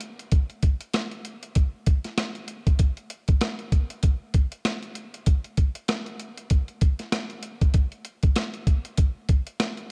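A dark, dry production frames this moody, reflective hip hop excerpt at 97 BPM in 4/4 with a swung sixteenth-note feel, where a gritty, compressed boom bap sampler-style drum kit sits up front for the full 9.9 seconds, its thumpy kick, medium-tuned snare, rim click and hi-hat carrying the entire excerpt on their own.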